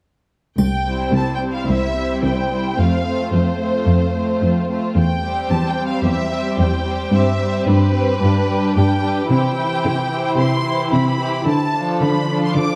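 An up-front cello section anchors this heroic, triumphant film-score cue, its bowed bass line carrying a soft attack and expressive vibrato from 0.6 seconds. A symphonic violin section sings the melody above it with a smooth, even top, while a violin section set further back traces a gentle second line. The viola section fills the middle with expressive accompaniment, giving the strings a lush, full body. A bright triangle sits in the background only until 1.6 seconds. The harmony moves steadily from C through F and G before turning to D minor near the end of this cut from a longer piece, all bathed in a moderate scoring-stage reverb that lends the ensemble a warm, spacious glow.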